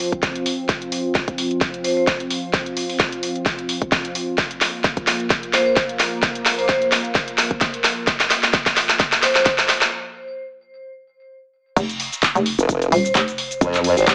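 A swung 130 BPM bass house groove in 4/4 opens with a punchy, overdriven electronic kick and an up-front garage kit of cracking snare, hats, handclaps, shaker and crash, while an evolving, detuned sawtooth pad holds sustained chords under a gritty vibraphone struck with hard mallets, its metallic ringing carrying tape echo and a boxy small-room tone. The build-up carries a drum fill until the pad drops out at 9.9 s for a brief break, and the drop at 11.8 s brings in a hollow, knocking FM bass with tube saturation and sidechain pumping. At 12.6 s a compressed, wobbling formant-sweep bass joins, giving this bouncy fragment of a longer piece a small-speaker sound in a moderate digital room.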